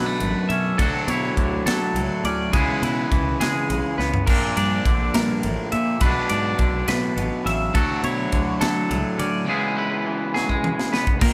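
Math rock and midwest emo in a playful, wistful 6/8 at 69 BPM, cut from a longer piece, where a twangy clean electric guitar comps, a compressed twelve-string electric guitar rings out bright arpeggios, a double-tracked overdriven guitar drives a crunchy riff, and a dark, round, foam-muted fingered bass anchors the low end, while an airy, polished fusion kit with bright cymbals and a tight kick sits up front and enters at 0.2 seconds, adding fills at 4.0 and 10.3 seconds over Bm9, Dmaj7, C#m7 and Bbmaj9 chords in a lightly reverberant room that sounds like a band playing live together.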